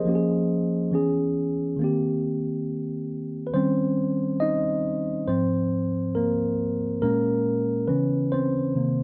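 A mellow, clean tine electric piano sits up front in this short, sensual R&B passage at 69 BPM with a gentle 16th-note swing, moving through lush chords such as Db6, Cm7, Eb7 and Ab69 before stepping into a solo from 3.5 seconds, all heard alone in a moderate stone-room reverb that gives the direct tone a live, close-knit feel.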